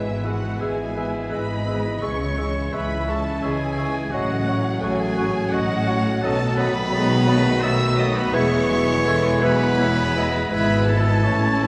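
A slow, romantic classical movement for symphony orchestra in E major, moving at 85 BPM in a rubato 3/4, its mood serene and tender. A dark, lush violin section carries the melody with expressive vibrato, heard from a distance, while a second, very quiet violin section adds a smooth, even line beneath it. A clear clarinet, a distant, roomy cor anglais and, from 0.2 seconds, a pure, hollow flute with lifted highs weave second lines in the background. A mellow bassoon and a very quiet studio viola section fill in the accompaniment, and a horn section and a trombone section hold sustained chords, while a clear, distant trumpet adds stabs. The bass rests on a close, rich cello section and a woody double bass section with bowed vibrato, under a progression that passes through C#m, F#m/A and B7 before settling back on E. The whole passage, cut from a longer piece, sits well back in a wet concert hall with a long 2.4-second reverb tail.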